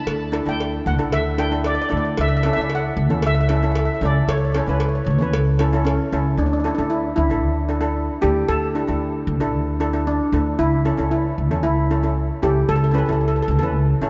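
This carefree, sunny calypso excerpt moves at 114 BPM in a straight 4/4, cut from a longer piece and set in a vast, echoing cathedral-like space with a softened top end. A lead steel pan played with medium rubber sticks carries the melody up front, its metallic shimmer ringing from C#4 to A5. Beneath it, cello pans struck with hard rubber sticks provide the accompaniment in a bright, close-miked, dry and full voice, while a pizzicato upright bass with steel strings sits up front with a woody, growly, thumpy low end. A vintage, band-limited cowbell joins at 0.1 s and drops out at 6.0 s. The harmony sways between Dsus2 and Aadd9/C#, returning to Dsus2 at 6.4 s before settling on A/C# as the phrase repeats.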